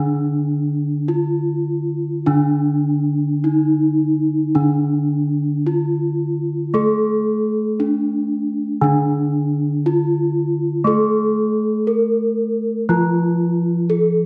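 Two bronze gamelan metallophones sound together from the opening of this stately excerpt in D pelog, moving at a slow 48-59 BPM in a straight 4/4. The upper instrument carries the melody with padded disc mallets, giving a mellow, soft ring whose paired tuning produces shimmering beats. Beneath it, the lower metallophone accompanies with a wooden mallet, close-miked and full, set up front within a reverberant recital-hall space, and the music moves into a new section at 8.8 seconds before breaking off at 14.3 seconds.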